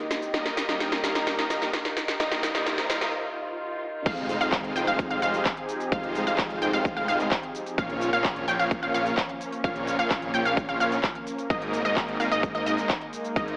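A straight 4/4 pulse at 129 BPM drives this euphoric, powerful festival progressive house passage in F minor, cut from a longer piece, opening with a build-up. A big-room dance drum kit with punchy snare, crisp hats, handclaps, shaker and crash plays a fill, a brilliant concert grand piano and a lush, chorused pad sit in the background under a filter sweep, a huge, compressed supersaw riff enters at 0.3 seconds, and a very quiet riser, swell and impact lead into a short break. At 4.1 seconds the drop lands as the piano stops and an overdriven electronic kick, a thick, saturated detuned saw bass and an evolving, bright unison pluck playing arpeggios join the riff over Fm7, Bbm and Absus2, with sidechain pumping on the pitched parts, tape echo on the supersaw, pluck and piano, and the mix carrying a high-pass filter, an AM radio tone and a moderate hall reverb.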